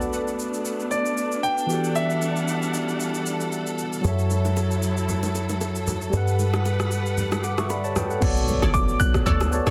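Amapiano at 115 BPM in 4/4, with a gentle 16th-note swing and a soulful, hypnotic mood, moving through Bm7, Em11, F#m7 and Gmaj9 before landing on Bm9. A clean, up-front tine electric piano with a phaser carries the accompaniment throughout, while a lush bowed string section with vibrato and portamento holds sustained chords under sidechain pumping, and a polished grand piano with tape echo sings the high melody in two short phrases. The deep house kit of kick, rim click, shaker and crash sounds overdriven and layered, re-recorded in a large room. At 4.0 seconds a soft, round, woody FM bass enters alongside ringing congas and bongos played with hard hands in the background, and the kick drops out shortly before the section ends. The drop at 8.2 seconds brings a hollow, bouncy log drum bass, a very quiet electronic impact, and a punchy, detuned sawtooth chord stab with chorus and tape echo sitting behind the mix, all under light reverb and a dense, heavily limited modern master.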